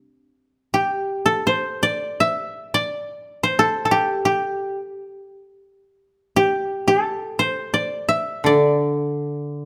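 This is Japanese traditional chamber music, an austere, calm passage cut from a longer piece and lasting just under ten seconds. It moves in a free, rubato 4/4 at roughly 81-89 BPM, set in D suspended pentatonic with tuning slightly below standard at A4 = 439 Hz. A koto carries the melody alone from the start, plucked with fingerpicks in a range from D4 to E5, its tone woody, dry and warm. At 8.4 s a second koto joins on accompaniment, sounding a low D3 slightly louder than the melody until the end at 9.7 s. Both instruments sit up front, captured by close, detailed microphones with a light touch of reverb.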